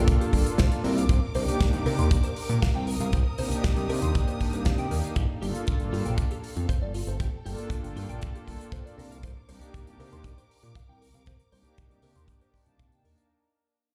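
Played back through a big sound system in a bare room, with a large studio reverb, this sleek, cosmic nu-disco excerpt at 118 BPM fades out across its whole 13.3 seconds as it cycles between Gm9 and Cm9. A punchy, up-front kick and an airy acoustic kit with hi-hat and a medium-tuned snare drive the straight 4/4 groove, while a fat, detuned sawtooth bass sits up front under a filter sweep. A smooth, chorused analog pad and a lush bowed violin section, both pumping with sidechain, carry the chords, and a bright, clean, direct-recorded electric guitar picks a compressed riff in the background through ensemble chorus and analog delay.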